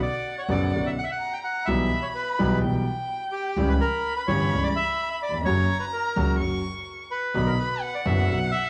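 A rubato pulse in four pulls and stretches beneath this dramatic, sultry tango, which is cut from a longer piece. A reedy, bright bandoneon carries the melody from 0.0 seconds, sitting up front with a mid-forward edge. A single bowed violin traces a second line above it, its soft attack, vibrato and portamento giving it a warm, expressive voice. From 0.5 seconds a grand piano with deep bass and close presence supplies accompaniment, while a woody, dark pizzicato upright bass with steel strings and a touch of tube saturation holds the bass until 8.5 seconds. The harmony moves from Bmadd9 through Em/B and C#dim to F# before settling on Bm, and the parts sit in light reverb and small-room ambience with the character of a home cassette recording.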